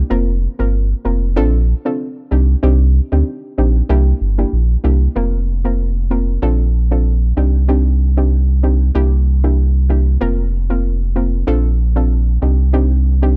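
A dry, gritty recording with little reverb frames this sunny, joyful afrobeats cut from a longer piece, moving at 95 BPM in 4/4 with a light 16th-note swing. A deep, round sub bass sits up front with fast attack and sustained notes, while a soft, dark pluck with a short decay and chorus shimmer plays the accompaniment further back. Both parts run the full 13.4 seconds over a cycling progression of Fsus4, Bbmaj7, Cmadd9 and C7.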